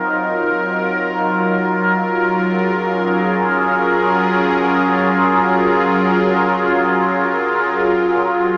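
Heard through a cassette-like, small-speaker sound bathed in a huge, wet reverb, this reflective, melancholic ambient fragment features a lone evolving wavetable pad, bright and up front, whose detuned unison triangle tone morphs with a slow attack and long release through phaser, built-in reverb and tape echo as it moves from Ebm69 to Gbmaj9 across about 8.6 seconds.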